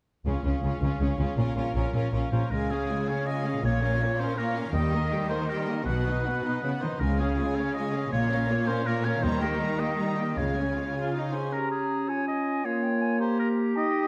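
A heroic adventure film score in 6/8 at 107 BPM, this cinematic passage in Db lydian feels adventurous and soaring, and it is cut from a longer piece. From 0.3 s a lush string body carries it: a bright, intense violin section sings the melody over a second violin section with a focused, smooth top, while a distant viola section fills in accompaniment and cellos and up-front double basses anchor the bass with rich, even vibrato. A warm oboe with light vibrato joins at 2.3 s with its own second line, playing over chords that move among Db, Bb minor, Eb and Cb. The strings fall away around 11.5 s, where a dark, tight French horn section takes over with sustained chords, joined by a clear, roomy clarinet and an airy concert flute with a crisp attack and straight tone. The whole sits in a wet scoring-stage reverb that gives the orchestra a spacious, cinematic sheen.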